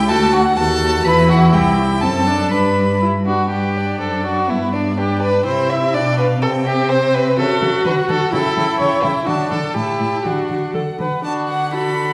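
A quick, graceful and cheerful classical-period movement for string quartet at 124 BPM in 2/4, set in G major and moving to D major from 7.4 s, with all four bowed players sounding throughout this cut from a longer piece. A clear, focused first violin carries the melody over a smooth, warm second violin that sits up front, while a rich viola supplies accompaniment from a more distant place and a dark, woody cello anchors the bass, every part colored by vibrato. The quartet is heard from further back in a wet recital hall with a 1.5 s reverb tail, and a vinyl crackle lies over the sound.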